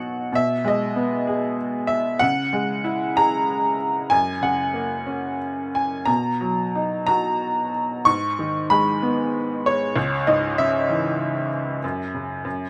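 Cool and brooding, this lyrical classical solo piano fragment unfolds in a rubato 3/4 at 95 BPM in B major with A4 tuned to 436 Hz, its bright, woody, slightly detuned upright piano sitting up front and intimate with long sustain and audible action noise in light reverb, as the harmony drifts from B6 through C#m, F#, Bmaj7, G#m and back to C#m before settling on F#5 at 11.8 seconds.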